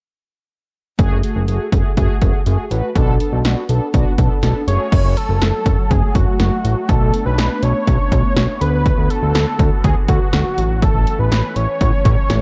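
A straight feel comes from a punchy analog drum machine, its overdriven kick, snare, hi-hat and crash cymbal sitting up front with the sound of a large room behind them. This synth-pop fragment, cut from a longer piece, has a cool, melancholic mood, anchored by a fat, saturated sawtooth-and-square bass that growls low with a nasal, evolving edge. For the opening section, a mellow, round synth brass carries the accompaniment, its detuned tone darkened by a filter sweep and colored with chorus and phaser, over chords moving from F#madd9 to Bm7. At 4.7 s a thick, warbling unison lead takes the melody, a vintage, detuned voice with a sub octave, vibrato and a dub echo, just as the brass gives way at 4.9 s to a swirling, bright analog pad that breathes in the background with a soft attack and long release. The closing section cycles through F#m, Bm7, D6 and A, in a dry mix that leans on echo rather than reverb.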